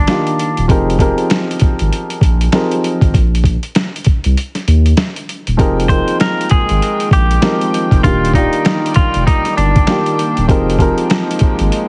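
A dark, mellow grand piano opens this tough, moody boom-bap hip-hop excerpt with a short-sustain accompaniment coloured by cassette tape, joined by a deep, thick sub bass whose saturated sine tone sits up front and holds its notes. A brief phrase from a clean, picked semi-hollow guitar sounds at the outset, and then the sampler-style drum kit settles into a swung groove of gritty, pitched-down hits, with a thumpy kick, a medium-tuned snare and hi-hat carrying a tape-like compressed weight. The kick drops out from 4.4 to 5.6 seconds, and at 5.6 seconds a rich studio string section enters in the background with bowed, reedy sustained chords, a nasal gut-string tone and light vibrato. From 5.9 seconds the hollow-body guitar returns with a compressed melody trailed by digital delay, moving over chords that shift from Fm11 to Ebmaj7. The whole mix carries a heavily compressed, radio-like sound with vinyl crackle and a dulled top end.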